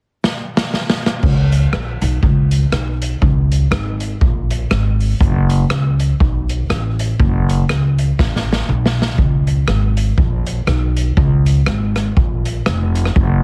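A street-band drum kit opens this upbeat, bouncy ska cut from a longer piece with a fill at 0.2 seconds, the airy, polished kit putting its boomy kick, dark cymbals and medium-tuned snare up front, before a woody, thumpy pizzicato upright bass on gut strings enters at 1.2 seconds and sits low in Db mixolydian at 121 BPM with swung eighths, another drum fill arriving at 8.2 seconds, all dry and squeezed into a heavily compressed radio sound with a cassette-tape grain.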